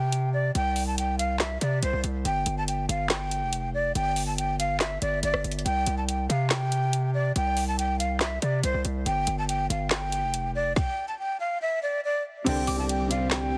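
Heavily compressed into a radio-like sound in a small room, this half-time trap excerpt at 141 BPM in C major feels wistful yet triumphant, moving between C5 and Fsus2 chords. A breathy, expressive metal flute with vibrato carries the melody through a low-pass filter and digital delay, up front beside an aggressive, saturated 808-style bass and an electronic drum kit with a hard-clipped kick, woody snare, metallic hats, handclaps, rim clicks and crash. A soft felt-muted upright piano enters at 12.4 seconds, and as the harmony lands on Csus2 at 12.5 seconds, dark sul tasto chamber strings in the background and a very quiet brass stab appear, followed at 12.7 seconds by a brief glassy FM synth bell with chorus and delay, before the cut at 13.6 seconds.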